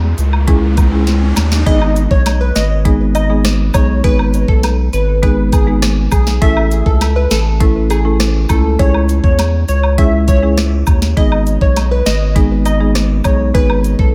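Bouncy and tough, this dancehall cut at 101 BPM in G# phrygian opens with an electronic riser and a drum fill before a glassy, detuned wavetable pluck carries the melody through chorus and delay from 1.7 seconds, over a knocking afro-pop kit with sharp snare and metallic hats, a deep saturated sub bass, a woody, dark marimba, and a light layer of cabasa and woodblock, all set in a digital ambience with light reverb.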